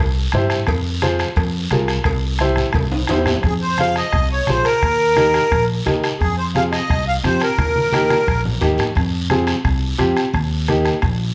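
A moderately roomy studio sound frames this fiery, passionate cumbia cut at 174 BPM, settling into F minor at 3.4 s. Pizzicato upright bass and a dark, mellow, up-front upright piano carry the harmony over a soft-beater bombo, low-tuned congas in the background and a raspy guiro, while ringing cowbell and timbales play only in the opening bars. A reedy, sweet accordion with light tremolo tuning and plate reverb takes the melody from 3.5 s to 8.4 s, and drum fills arrive at 2.8 s and 7.6 s.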